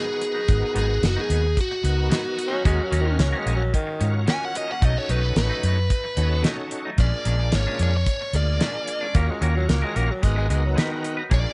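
A biting, overdriven lead guitar carries the melody from the first beat, up front and bright in this soulful, brooding straight-eighth soul blues in Eb minor at 111 BPM, cut from a longer piece. Beneath it, a damped 70s drum kit with a fat snare and tight kick sits dry and forward beside a round, foam-muted fingered bass that enters at 0.5 seconds and provides a dark, punchy foundation. A shouting tonewheel organ with chorus vibrato and a slow rotary speaker fills the accompaniment, while a twangy, compressed clean electric guitar adds stabs washed in spring reverb and tape echo. A raspy, growling tenor saxophone with vibrato adds a second line in two short passages, the first at 2.5 seconds, its tone touched by tape echo. The harmony moves through Abm7, Ebm7, B7 and Bb7#9 before returning to Ebm7 and Abm7, and the close, unadorned mix has a rolled-off, vintage top end.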